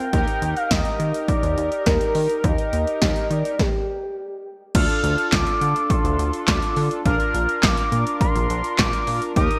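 A bright 1980s-style digital production bathed in lush hall reverb frames this upbeat yet wistful synth-pop excerpt, where a smooth, expressive sawtooth lead with vibrato and delay carries the melody over bold, fat analog synth brass, a glossy chorused pulse-and-sawtooth bass and a punchy, up-front analog drum machine with gated reverb, playing kick, snare, handclaps, hi-hat and crash. The harmony moves from Eb through Dm7 to Bb, with all parts breaking into a stop from 3.6 to 4.7 seconds.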